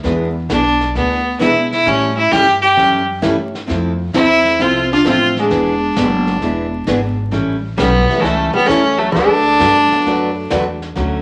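A clear, biting fiddle sits up front and carries the melody with light vibrato, entering at 0.5 seconds in this short, down-home western swing cut from a longer piece. Underneath, a bright, full-bodied jumbo acoustic guitar and a woody, polished upright piano share the accompaniment, while a thumpy pizzicato upright bass on gut strings anchors the low end and a jazz brush kit with brushed snare and hi-hat stays in the background. At 4.2 seconds a dark, clean, compressed hollow-body archtop guitar joins with a second line. The tune swings at 132 BPM in 4/4 in D major, moving through E7, A7 and Fmaj7 before settling on D6. A moderate large-studio reverb and a layer of vinyl crackle give the recording an old-time glow.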